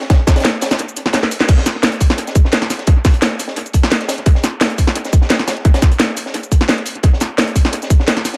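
Melancholic and soulful, this drum and bass excerpt runs at 173 BPM in a straight 4/4, built entirely from layered percussion: a tight, up-front electronic kick drum, a garage kit with a cracking snare, warm hats, crash and shaker, and a gritty, saturated breakbeat kit with a high-tuned snare sitting dark and rolled-off in the background, all set in an echo-heavy mix with light reverb, where the opening drop gives way to a brief break at 0.8 s, and a drum fill from 1.1 s with a band accent at 1.4 s leads into the second drop that carries on from 1.5 s.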